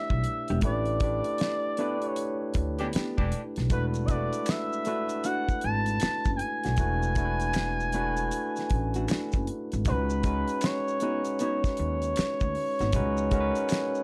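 A dark, lightly reverberant production frames this smooth, late-night neo-soul and R&B excerpt, its swung sixteenth-note feel resting on suspended ninth chords that move from A9sus4 through E9sus4 to C#9sus4. Up front, a mellow sawtooth portamento lead with vibrato, chorus and slapback echo sings the melody over a barky, lightly overdriven tine electric piano, a woody pizzicato upright bass and a dry, damped 70s drum kit with a fat snare and tight kick. In the background, a clean, compressed hollow-body jazz guitar adds a second line; the band hits accents together early on, a clear, tight vintage horn section stabs briefly at 2.8 s, and saturated maracas with finger snaps and group handclaps enter at 3.7 s.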